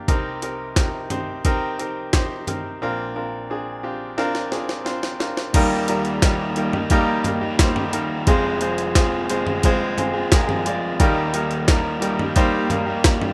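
Hopeful and anthemic, this piano-driven pop piece moves at a straight 88 BPM in 4/4, in Eb major with tuning set to A4 = 437 Hz, and it is cut from a longer work. A bright concert grand piano carries the accompaniment from the first moment, brilliant and polished, with deep bass, short sustain and an up-front presence, moving through Cm7 and Bbadd9. A sampler-style jungle drum kit sits just as close, compressed, pitched up and gritty, with a thumpy kick, a high-tuned snare, hi-hat, handclaps, toms and crash, all re-recorded in a large room. A drum fill from 4.2 seconds leads into the second section at 5.5 seconds, where an overdriven, picked electric garage guitar enters with a warm riff over Eb and Fm. The overall mix is dry and rough, with the feel of a home demo.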